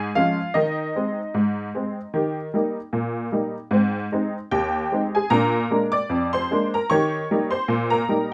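Ragtime piano in a jaunty, playful mood, heard as a short fragment of about 8.3 seconds cut from a longer piece. A honky-tonk upright piano plays solo throughout, in 2/4 metre with a light swing on the sixteenth notes. The instrument sounds detuned and jangly, with a vintage, bright character and short sustain that keeps each note crisp. Sitting up front and present in the mix, the piano spans from low Eb2 up to D6, and a light reverb gives the room a little air. The harmony moves from Db through Ab/Eb, Eb and Ab before turning to Bb7 and Eb7, leaving the passage hanging on that last chord as it cuts off.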